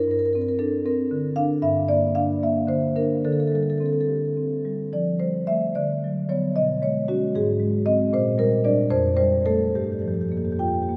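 Flowing and reflective, this 11-second excerpt from a contemporary classical piece for solo marimba moves in a rubato 6/8 at roughly 69-78 BPM in G dorian. The marimba, played with medium mallets, sits up front with a dark, smooth tone spanning F2 to G5, drifting through harmonies from Bbadd9/G and Gm toward unexpected turns like Ab before settling on Gm7 at 9.8 seconds. A cathedral reverb with a 4.4-second decay wraps the instrument in the resonant space of a church or concert hall.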